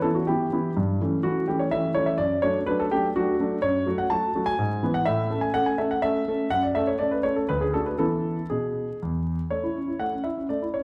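Heard through a wet recital hall reverb with vinyl crackle, this short cut from a longer classical-period piano sonatina has a cheerful, elegant air. A solo concert grand carries everything, sitting up front with an intimate, natural tone, deep bass and audible action noise, spanning D2 to A5. In 3/4 at 124 BPM with a straight feel, it opens in D major over chords moving from Em through A7/G to D/F#. At 3.6 s it settles into A major, passing through F#m, E/G#, A, F#m and D before reaching E. A fresh section arrives on A at 9.5 s, and the piece is cut off at 10.8 s.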